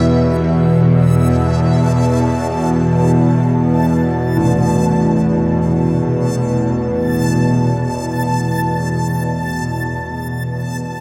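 A tense, string-like drone anchors this ominous, vast dark ambient passage in free time, sitting up front in the low register with vibrato and a sawtooth edge over an E5 chord, tuned to A4 = 438 Hz. Around it, a reversed, granular texture swells dreamy and bright in the high register, while very quiet carillon bells ring bronze arpeggios with an iron-clapper, vintage tone. A huge reverb with an 8.6 s decay soaks the whole space, and this fragment of a longer piece fades out from 7.3 to 11.0 seconds.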